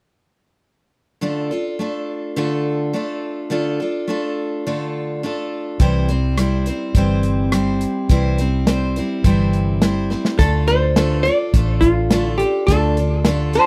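A straight 4/4 pulse at 105 BPM carries this heartbroken, lonesome cut of honky-tonk and classic country in D minor, taken from a longer piece. A bright, full-bodied picked steel-string acoustic guitar opens the accompaniment at 1.2 seconds, moving from D minor to C. At 5.8 seconds a foam-muted, round vintage electric bass joins alongside a natural country drum kit with a punchy kick, medium-tuned snare, rim clicks and hi-hat. A drum fill leads into the new section at 10.4 seconds, where a dark, clean hollow-body jazz guitar takes the melody through tape echo as the chords return to D minor. In the closing instant a metallic, nasal lap resonator guitar, played with fingerpicks and slide, sounds a single high note as a second line. The dry, close 1970s-style studio sound keeps the guitars and bass up front, with only a touch of airy room on the kit.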